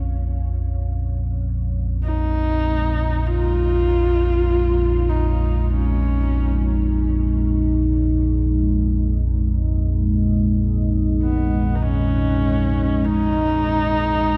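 In free time, this desolate dark ambient drone opens on a rumbling, wave-folded low drone placed up front and a detuned, warbling pad holding sustained chords that move from Bb minor to Db sus2, both washed in a huge ambient reverb. At 2.0 seconds a husky, woody horsehead fiddle enters as a single bowed voice with vibrato and portamento, its melody trailed by tape echo. The fragment is cut from a longer piece and stays dark and desolate throughout.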